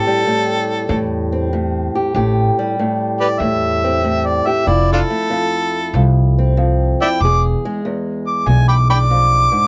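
A worn, warbly cassette sound with wavering pitch drift and light reverb colors this brooding, smoky slice of acoustic country blues, cut from a longer piece. At 95 BPM in 4/4 with a swung eighth-note feel, it sits in A minor and moves from Am7 to Fmaj7 at 4.7 seconds and on to E7 at 7.2 seconds. The harmonica takes the solo throughout, up front and jazz-inflected, with a smooth top, light vibrato, tongue slaps and scooped notes. Beneath it, an old ladder-braced acoustic guitar is fingerpicked on aged strings, giving a boxy, woody accompaniment. An upright bass enters at 0.9 seconds, played pizzicato on steel strings with a growly, warm tone that sits forward in the mix.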